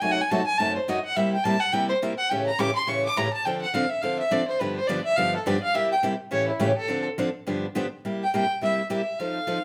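Swinging and charming, this fast jazz passage at 209 BPM in C mixolydian features a rich, biting fiddle with light vibrato carrying an earthy bowed solo from 0.0 to 8.0 seconds over bright picked steel-string acoustic guitar that cycles through chords such as F#dim7, C7, A7, Dm7 and G7, all in a moderate studio reverb.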